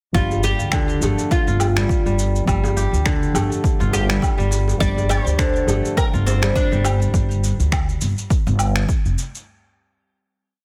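Organic downtempo with an earthy, warm mood, this short piece rides a single swung groove over one sustained minor-seventh chord. A bright, plectrum-plucked oud carries the melody in short call-like motifs, its double strings touched with delay, while a crisp, ringing kora repeats a fingerpicked sixteen-step arpeggio pattern beneath it. A deep, mellow chord stab sits in the background with held chords and syncopated pushes, its soft, nasal tone thickened by chorus, delay and sidechain pumping, and it drops out at 7.2 seconds. Up front, a woody, growly upright bass plays a dotted-rhythm pizzicato line shaped by sidechain pumping. The beat layers a punchy, overdriven electronic kick with gritty shaker, finger snaps and woodblock, while a tight, cracking djembe sits far back in the mix until 6.8 seconds. Light reverb and studio ambience frame a dense, heavily limited modern master.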